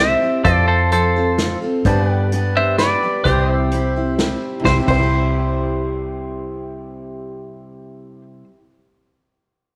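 Heartfelt and down-home, this honky-tonk and classic country excerpt in 3/4 at 129 BPM in C major sets a twangy, compressed, up-front clean electric guitar melody over a bright, full-bodied picked dreadnought acoustic guitar, a worn, woody, slightly detuned upright piano in the background, pedal steel guitar chords with fingerpicked slide and volume swells, and a dark, round, foam-muted vintage bass, while a roomy, distant acoustic drum kit with dark cymbals and a punchy kick played with bundle sticks joins at 0.4 seconds and drops out at 5.0 seconds, all under light reverb as the chords move from F to G to C.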